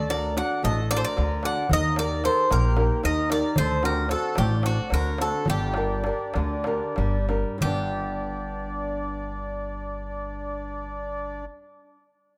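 A rough home demo mix with light reverb and a touch of studio ambience frames this brief, bittersweet and brooding Greek folk cut in 7/8, taken from a longer piece. Up front, a bright, metallic bouzouki picks the melody on double strings, some of them octave-doubled, while a reedy, close-miked accordion carries a second line and a small, fingerpicked nylon-string guitar gives accompaniment. A woody, growly upright bass played pizzicato sits forward too, a crisp metal-shell darbuka ticks in the background until 7.9 s, and the band slows between 3.6 and 7.6 s before settling onto a G chord.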